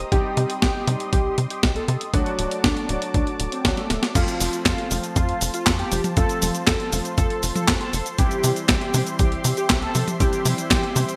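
Italo disco, danceable and melodramatic, cut from a longer piece and driven by a tight, nasal sawtooth sequencer bass, a gritty overdriven electronic kick and an up-front, clean 12-bit drum machine of snare, handclaps, hi-hat, cabasa, crash and toms steeped in gated reverb. A mellow, detuned analog pad holds sustained chords with chorus while a smooth vintage grand piano plays stabs, and a thick, bold unison lead carries the melody with vibrato, analog chorus and digital delay. A drum fill at 3.9 seconds leads into a new section at 4.2 seconds, the whole mix set in a lush hall with bright 1980s-style production.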